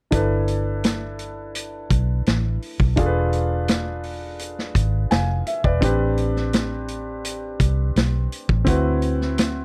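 Lush 1970s-style soul in G major at 84 BPM, romantic in mood and tuned slightly sharp to A4 = 444 Hz, moving through rich G69, E7b9, Am11 and D13 chords in this short cut from a longer piece. A warm grand piano carries the harmony in the middle register, a dark, round, foam-muted fingered electric bass anchors the low end, and a vintage acoustic kit with a tight kick, medium-tuned snare and hi-hat keeps a straight 4/4 groove, its top end rolled off. All three sit up front in a dry, close studio sound with little reverb.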